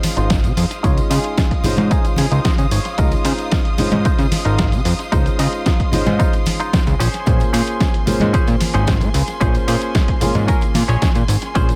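Nu-disco at 112 BPM in Db major, this feel-good, sunny excerpt moves from Dbmaj9 to Bbm9 at 7.0 seconds. A fat, saturated sawtooth bass and a punchy, overdriven electronic kick sit up front, joined by a gritty, tape-warm sampler-style kit of hi-hat and snare, tambourine and congas in the background, a clear, boxy baby grand piano, and a lush, bowed violin section holding chords, with sidechain pumping on the piano, violins and bass. A bright, twangy clean electric guitar plays a riff through subtle chorus and a filter sweep, adding a fill from 1.9 to 3.0 seconds, all within an echo-heavy digital ambience.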